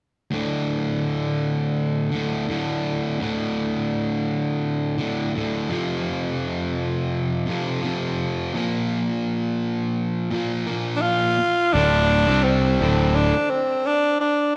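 Driving and brooding, this 84 BPM rock fragment in D minor opens at 0.3 s with a bright, distorted electric guitar riff up front over chords moving from D5 to F5 to Bb5, before a raspy, gritty tenor saxophone solo with scooped notes and light vibrato arrives at 11.0 s, joined at 11.7 s by a growly, punchy fingered electric bass and a second, compressed distorted guitar tucked in the background, all set in a moderate echo chamber reverb.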